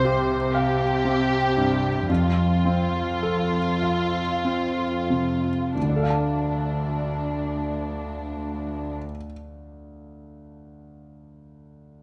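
Cinematic, bittersweet and sorrowful film-score excerpt in D minor and 6/8, drifting rubato at a slow 30-41 BPM and slowing over its first 5.8 seconds, where a dark, woody violin section sings the melody with vibrato and sul tasto bowing above a smooth, softly attacked cello bass and very quiet ringing harp arpeggios, moving through Csus4, F and Dm, while the clear, intimate grand piano, with its deep bass and audible action noise, accompanies from the start and carries on alone until 12.0 seconds, all in light reverb with close, detailed miking.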